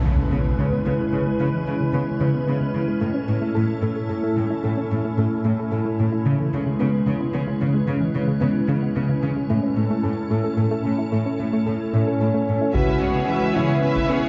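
Heard from far back in a reverberant scoring stage, with a dark, softened top, this short cut from a longer cinematic score blends orchestra and electronics in a futuristic, vast mood, set in a steady 6/8. An electronic impact hits at the very start as a dark, organ-like pad, detuned and slowly evolving through an ensemble chorus, holds sustained chords up front over a clear, lush cello section playing the bass line with vibrato. Tucked in the background, a soft, round synth pluck with chorus and tape echo spins arpeggios through the whole build-up, as the harmony alternates between C#m7 and A. At 11.9 s a mellow French horn section adds sustained chords. At 12.7 s, as the music returns to C#m7 and opens a new section, a warm, smooth violin section enters with a second line and a rich viola section supplies quiet accompaniment, and a moment later a taiko ensemble struck with hard sticks joins from a small room.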